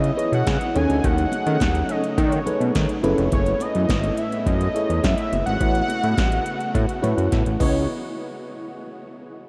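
Early-eighties boogie funk at 105 BPM with a slick, danceable feel, where a fat, detuned sawtooth bass sits up front beside a punchy electro drum machine with deep kick and metallic hats, a sub-octave analog lead carries the melody through tape echo, a chorused pad warbles in the background, a dark FM electric piano and very quiet bright congas fill the groove, a mellow synth brass second line appears only from 0.8 to 3.3 seconds, chords move from C#m9 through B13, F#m11 and A69, a drum fill arrives at 7.3 seconds, and the whole dreamy mix is soaked in huge ambient reverb.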